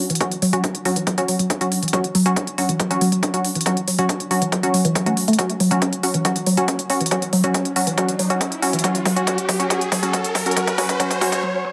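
A crisp, detuned wavetable chord stab sits up front in this driving, industrial peak-time techno excerpt, its unison voices pumping against the sidechain and trailing tape echo as it punches out F#5 chords from the very start. Beneath it, a woody, wave-folded pluck riff with a dark, organic edge and a moving notch runs through chorus and delay, pumping in the same way. A smooth electronic hi-hat sits forward in the mix while a punchy, layered kick anchors the groove, both re-recorded in a small room. The whole passage is a build-up, with a filter sweep on the synth arpeggio sound across its length, a drum fill arriving at 5.4 seconds and an electronic riser entering at 7.7 seconds. It all drives toward a break at 11.4 seconds, bathed in a stony, reflective room reverb.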